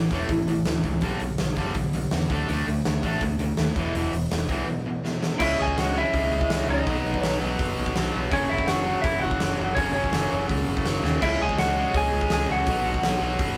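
A rough rehearsal-room sound with light reverb frames this rebellious, upbeat punk rock excerpt at 165 BPM, where a distorted, scooped guitar sits in the background beside a bright overdriven guitar, both picking riffs over a growly, punchy electric bass and a big rock drum kit with a fat snare and punchy kick played up front. After a drum fill, a twangy, slightly broken-up lead guitar enters at 5.4 seconds with an up-front melody, as the chords move from A, G, D5 and E5 into C#m, B and F#5. A second drum fill lands at 11.0 seconds before the passage settles back on C#m and closes on B5.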